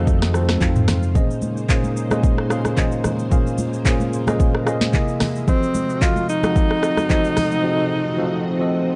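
A bright, vibrato-laden alto saxophone with delay enters at 5.5 s over a soulful, hypnotic amapiano groove in Bb minor at 111 BPM, where a worn, slightly out-of-tune tine electric piano plays up front, a lush vintage string machine with phaser and ensemble chorus sits in the background, a thick saturated sub bass sounds only until 1.1 s, an electronic afro-pop drum kit with a deep kick, sharp snare and gritty 12-bit sampler character plays alongside thin-skinned congas, and a very quiet electronic swell enters at 8.2 s in this dark, lightly reverberant excerpt.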